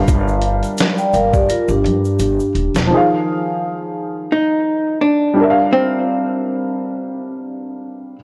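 A dark, worn upright piano carries this hazy, melancholic lo-fi hip hop fragment, its slightly detuned, boxy tone softened by cassette tape and a low-pass filter, with audible action noise close up. At 85 BPM in 4/4 with a light 16th-note swing in F dorian, a woody pizzicato upright bass with tube saturation and a gritty, pitched-down, sampler-style trip hop kit with a thumpy kick hold the opening, joined by a grainy tube shaker tucked in the background. The drums play a fill before they and the bass stop at 2.9 seconds. Early on, a mellow vibraphone struck with soft mallets adds a ringing second line through filtering and analog delay. After the harmony moves from Gm7 to Fm7, a clean, hollow-body archtop guitar enters at 4.3 seconds with a compressed, picked melody, also filtered and delayed, as the chords return to Gm7. Light small-room reverb and a dry hardware recording give this cut from a longer piece an intimate feel.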